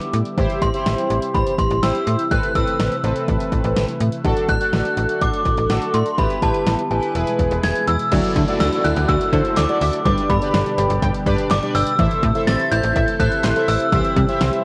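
A snappy, metallic, slap-like FM bass sits up front in this cool, driving synth-pop excerpt at 124 BPM, underpinning a chiming, inharmonic synth melody that rings through ensemble chorus, tape echo and shimmer reverb. A tape-saturated deep house kit with a deep kick, fat snare, claps and hi-hats drives the groove, while brassy, nasal analog synth brass enters at 0.4 seconds and a swirling phased pad holds chords in the background over a progression that moves from C/A through Amadd9 and D/A. At 8.1 seconds a round, detuned analog pluck adds background arpeggios and a very quiet downlifter falls away, the whole cut carrying the soft grain of a home cassette recording with moderate spring reverb.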